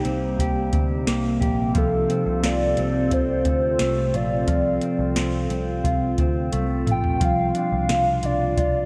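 This dream pop excerpt drifts at an unhurried straight pace, its mood ethereal and melancholic, with chords moving from Cm7 to Dm7 and settling on G7 at 7.2 seconds. A warbling, nostalgic synth lead carries the melody with vibrato, colored by chorus and delay. Beneath it, a lo-fi, tape-like pad holds sustained chords with a slow attack and long release, bathed in chorus and its own reverb. A mellow, clean electric guitar plays fingered arpeggios with subtle chorus and delay, while a foam-muted picked electric bass adds a round, punchy low end from 0.1 seconds. A soft vintage rhythm box sits up front with a deep kick, tonal snare, metallic hats and toms, and plays a drum fill from 6.5 to 7.2 seconds, all within a dreamy mix soaked in lush hall reverb.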